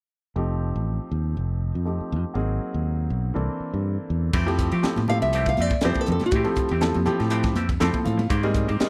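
Lightly swung sixteenths in 4/4 drive this slick, bright electric jazz fusion excerpt, where a clear, intimate grand piano with audible action noise and a direct fingered electric bass open together, a gritty fusion kit with a punchy kick and clean semi-hollow guitar stabs in lush chorus arrive at 4.3 seconds, hard-hand congas sit in the background, and a fingerpicked nylon-string guitar carries a brief up-front melody with slapback echo from 5.1 seconds, while the piano adds a late fill in a small room.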